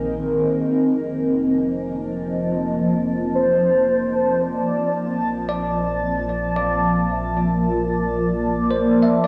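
Opening on a shimmering, ethereal pad with a chorused, phased glow above a deep, round sub bass and a resonant drone of moving overtones, this peaceful, weightless ambient fragment at 56 BPM brings in a velvety, detuned synth lead at 3.4 seconds, settles into Bb lydian as the drone stops around 5.1 seconds while the lead fades in, and adds bright, bell-like tine electric piano arpeggios through analog delay from 5.5 seconds, the whole heard in a small, cassette-recorded room soaked in wet spring reverb.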